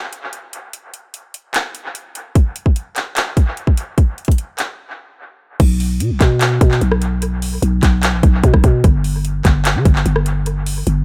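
A growling, buzzy 808-style bass enters up front at 5.6 seconds, spanning G1 to D3 beneath an electronic trap drum kit of hard-clipped kick, metallic hi-hats, handclaps, rim clicks and crash cymbal drenched in dub echo, in this hard-hitting, brooding half-time hip hop excerpt at 148 BPM, tuned to A4 = 438 Hz, with a brief break from 4.8 seconds and a dry, echo-heavy mix.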